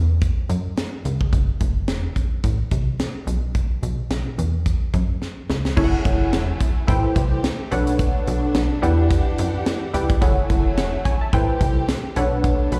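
Heard as a live gig through the venue's PA with a light recital-hall reverb, this slick, late-night early-eighties boogie funk excerpt at 108 BPM with a swung 16th feel opens on a plucky, sawtooth-edged analog bass and a tight, up-front acoustic kit with a high-tuned snare and dark cymbals over Esus2 and Am; after a drum fill at 5.2 seconds, a detuned, chorused polysynth comp with plate reverb and slapback echo arrives at 5.8 seconds alongside a distant, lush bowed string section, as the harmony shifts to minor ninth chords.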